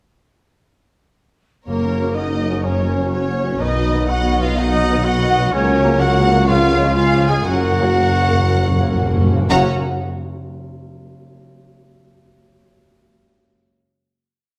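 Bathed in a roomy recital-hall reverb, this short, heroic 12/8 film-score cue has lush violins carrying a soaring theme, doubled by airy, distant flutes, a dark cor anglais and a punchy trumpet, while a second violin line adds a counter-melody over a rocking viola figure, mellow horn and trombone chords, sweeping bright harp arpeggios, and cellos, tuba and double basses holding the bass, with soft-mallet timpani sounding at the opening and returning at 6.5 seconds, adding a fill from 7.5 seconds as the music slows into a final chord at 9.5 seconds that the ringing harp carries to 11.6 seconds.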